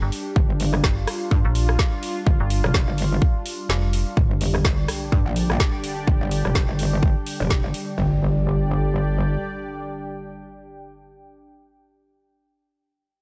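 A bright, resonant sawtooth pad and a warbling, lo-fi tape-like pad pump with sidechain over a digital FM bass that stops at 4.0 s, opening this gritty, bouncy bass house excerpt at 126 BPM with swung 16ths, while a distorted, aggressive wobble bass, a punchy up-front kick and a garage kit of woody snare, rim click and metallic hats drive the drop until the kick drops out just before a background sub drop and impact land at 4.2 s, where a filter sweep runs across the wobble bass in a dry mix.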